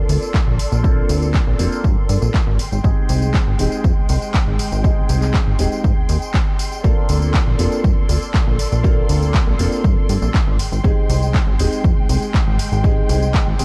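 This joyful, funky slice of filtered disco house opens at once with a clear grand piano, a lush studio string section and a plucky analog bass, all moving between Bbmaj9 and Abmaj7 chords in Bb major at 120 BPM in a straight 4/4. The piano comps in its middle register through a phaser and a low-pass filter. Behind it, the bowed strings hold smooth, distant chords with vibrato. The bass is the loudest of these three, a punchy, decaying sawtooth-and-pulse tone with ring modulation and a fast filter pluck, and like the piano and strings it pumps under sidechain compression. An analog drum machine adds handclaps, hi-hat and tambourine from 0.1 seconds, with pumping on the hats and percussion, and an overdriven, layered electronic kick sits up front from 0.3 seconds. Both drum parts carry the sound of a large room, while the rest of the dark, warm production stays dry.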